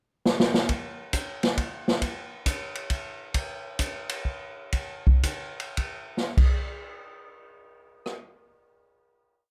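A swinging big-band drum kit, played with sticks and set up front in a natural studio room with light reverb, opens with a short fill at 0.3 seconds and carries a sophisticated, warm jazz waltz on ride cymbal, hi-hat, punchy kick, medium-tuned snare, rim click and crash, slowing down from 3.3 seconds before landing on a final hit and stopping at 8.2 seconds.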